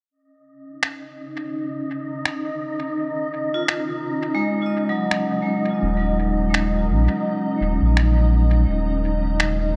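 Swung sixteenths in 4/4 give this hazy, spacious slice of ambient dub a loose gait, set by compressed, muffled electronic finger snaps that sit up front from 0.8 seconds, soaked in studio reverb and dub echo. A blurred, detuned granular cloud pad holds sustained chords with a slow attack and long release, kept evolving by its own reverb and a filter sweep. Alongside it drifts a breathy, wind-like tuned noise texture, dark and faint. At 3.5 seconds a vibraphone struck with hard mallets enters with ringing, metallic arpeggios, its fast motor vibrato softened by a low-pass filter and thrown into dub echo. A round, sine-based sub bass arrives at 5.8 seconds, deep and prominent beneath the rest, in an echo-heavy, lightly reverberant mix with a rolled-off top, cut from a longer piece.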